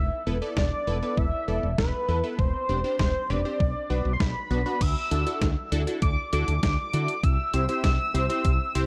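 Heard through worn, warbling cassette tape with light reverb, this cool, melancholic synth-pop fragment is cut from a longer piece and opens with a bold, retro octave-doubled lead, its sawtooth and ring-modulated tone carrying vibrato, chorus and tape echo above a round, woody fretless electric bass. A punchy, detuned polysynth comp with chorus and a filter sweep joins at 0.3 s, and a detuned 8-bit drum machine arrives up front at 0.6 s with a thumpy kick, snare, hi-hat and crash cymbal. The harmony moves to a new section at 4.8 s.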